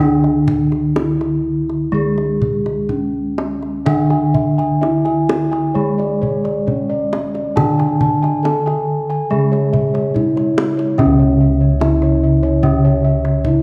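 Shimmering and hypnotic, this short cut from a longer Javanese gamelan piece moves at an unhurried, straight pulse in a pelog tuning. A bronze metallophone carries the melody with a mellow, airy ring from padded disc mallets, while a lower bronze metallophone plays the accompaniment up front, struck with a horn mallet, its dark, smooth tone colored by the shimmering beats of paired tuning. Bossed gongs hold the bass with a round, beating resonance set in a boxy small room, and a tight kendang joins at 0.2 seconds to supply the percussion. At 3.9 seconds a higher set of bossed gongs enters with soft, padded arpeggios, and at 11.0 seconds the music moves into a new section. The ensemble sits in moderate recital hall reverb, heard through worn old cassette tape whose warbly pitch drift lends the sound a faded, wavering quality.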